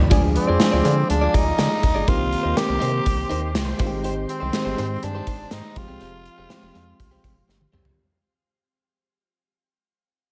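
1980s-style pop at 122 BPM in a nostalgic, moody vein, this brief fragment fades out across its length over a chord cycle of Ddim, Cm7, Abmaj7 and Fmadd9. A raspy, gritty tenor saxophone with vibrato carries the melody from 0.4 s, bathed in shimmer reverb, over glassy, bell-like FM electric piano with chorus, a compressed clean electric guitar riff tucked in the background, a very quiet lush sawtooth pad and a rubbery, bouncy square-wave bass. Up front, a punchy gated drum kit with a bright stone-room sound drives the groove and closes with a fill at 7.5 s.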